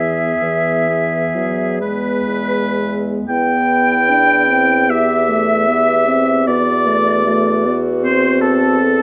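In a flexible, rubato four-beat pulse, this slow romantic movement for wind quintet unfolds with a tender, warm mood, heard here as a short cut from a longer piece. The silver concert flute carries the melody with a pure, metallic tone, tongued notes and vibrato, though it sits somewhat distant in the blend. Up front, the clear oboe sings a second line with light vibrato in a graceful classical style. Beneath them, a bright clarinet stays in the background with accompaniment, and a close-miked French horn adds a warm voice to the inner harmony. The bassoon anchors the bass on one low pitch with light vibrato and a soft attack, placed roomy and far back. At 3.3 seconds the harmony turns from major to minor, and a more shadowed chord arrives at 6.5 seconds, all within a moderate recital hall reverb captured by close, detailed microphones.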